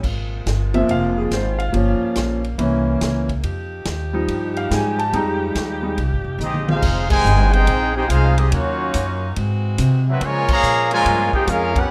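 Cut from a longer piece and set in light reverb, this sultry, swinging big band track in F minor at 142 BPM opens with edgy saxophone section chords, a woody, growly pizzicato upright bass and a vintage drum kit with a punchy kick, joined at 0.7 seconds by a clear concert grand piano solo, until a drum fill at 6.4 seconds brings in the up-front trumpet section on the smooth-topped melody and the tight trombone section on a second line, with band accents at 7.0 and 10.4 seconds.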